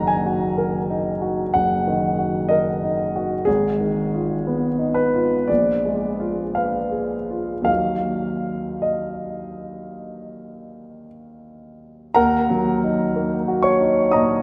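A close, intimate concert grand piano with deep bass and audible action noise plays a bittersweet, stormy romantic character piece alone in a free, rubato 4/4 for about 14.4 seconds, its up-front sound bathed in a long, wet cathedral reverb as this brief passage, cut from a longer work, moves through a chord progression that settles back onto the home minor chord at 7.7 seconds.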